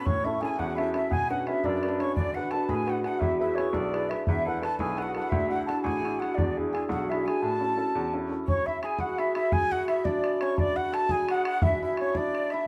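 A moderate stone-room reverb surrounds this band playing live together, giving the cut from a longer piece an open, resonant space. It is a rollicking, bright Celtic jig in A major at 114 BPM in 6/8, with a straight feel. A reedy baroque flute carries the wooden, tongued melody with a touch of vibrato, while a breathy low whistle adds a soft-attacked second line above it, and a mellow, shimmering cimbalom rings out up front as another second line. A boomy, open bodhran drives the jig from the start until 12.6 seconds. A clear upright piano, intimate and woody with audible action noise, accompanies through a progression from A through Bmadd9, D6, E, Esus4, Dadd9 and E7 back to A, then stops at 8.4 seconds. From 8.5 seconds the flute, whistle and cimbalom continue over the bodhran, carrying the jig to the end at 12.7 seconds.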